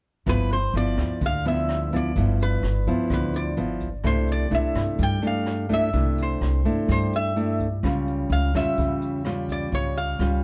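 A metal-body resonator slide guitar carries a bright, nasal melody from 0.3 seconds over a full-bodied, fingerpicked nylon-string guitar, woody pizzicato upright bass and a distant, roomy brush kit with boomy kick, hi-hat and rim click in this romantic, breezy bossa nova excerpt at 127 BPM, moving through G6, C69 and C#dim in a dark production where plate reverb touches the slide guitar.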